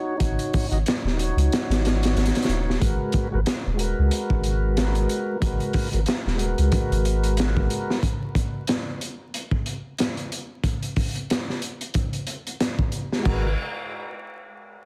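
Dense, heavily limited and dusted with vinyl crackle in a small room, this dark, melancholic trip hop excerpt sets a clear tonewheel organ turning through a slow rotary speaker with harmonic tremolo and tape echo over a round, deep dub sub bass and a gritty, saturated breakbeat kit with a high-tuned snare and tight kick, the drums carrying on alone from 8.0 seconds until organ and bass briefly return at about 13.2 seconds.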